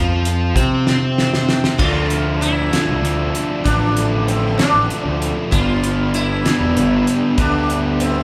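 A buzzing, shimmering sitar carries the melody in this brief cut from a longer psychedelic rock piece, entering at 1.8 s over a hypnotic, mysterious groove in 6/8 at 64 BPM in D dorian. Beneath it, a dark, double-tracked overdriven electric guitar plays a riff up front alongside a round, fuzz-soaked picked electric bass. A cloth-damped, thuddy drum kit with a fat snare, tight kick and dark cymbals comes in at 0.3 s and plays a fill from 0.9 to 1.8 s. A very quiet, veiled string section, muted and bowed with vibrato and a soft attack, holds sustained chords in the background. The harmony opens on an N.C. passage before moving to Dm at 1.8 s and G at 5.5 s, and the band sounds as if playing live together in one room, bathed in a wet, large studio reverb.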